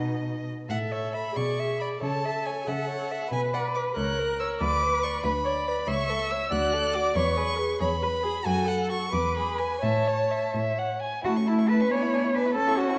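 Bathed in the wet reverb of a recital hall, this short cut from a quick classical-period movement for string quartet unfolds in a cheerful, graceful 6/8 with a flexible, rubato feel. A rich, smooth first violin sings the melody with vibrato, and a dark, woody second violin enters at 0.7 seconds with its own line beneath it. The viola and cello, both warm and expressive with vibrato and portamento, supply the accompaniment and the bass.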